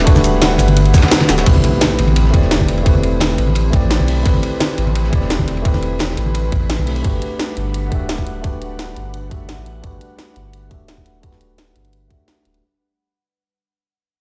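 Heard through a big sound system in a bare, stone-walled room, with a dull top end, this lush, rolling liquid drum and bass excerpt at 172 BPM in A dorian moves from Gmaj7 to Am9 as a very quiet electronic impact lands at 1.5 seconds and the music begins to fade out. A tight, layered electronic kick and an up-front garage kit with a cracking snare, crash, hi-hat and shaker drive the groove, while a gritty, saturated breakbeat kit with dark cymbals and soft-handed congas sit in the background until 7.0 and 6.9 seconds. A deep, round sub bass anchors the low end beneath a clean tine electric piano, filtered and echoed with a sweep from 1.5 seconds, and a breathy, detuned pad with chorus, phaser and sidechain pumping.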